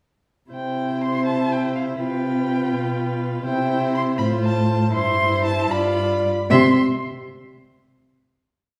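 A quick classical-period movement for string quartet in C major, this short, complete piece has a spirited, lively mood, moving at 81 beats per minute in a lilting 6/8 with a flexible, rubato feel. The first violin carries the melody high in its range with a rich, expressive tone, shaped by vibrato and portamento, and it sounds somewhat distant. Beneath it, the second violin and the viola play smooth, even chords in the rhythm of the tune and sustained chords, the violin sounding mellow and the viola full-bodied, both with vibrato. The cello sits close and up front with a warm, vibrato-laden sustained bass and passing notes, the most prominent voice in the balance. All four players enter together at 0.5 seconds, the harmony turning from C through F and G7 before settling on a final chord at 6.5 seconds, heard from further back in a recital hall with a resonant, lingering reverb.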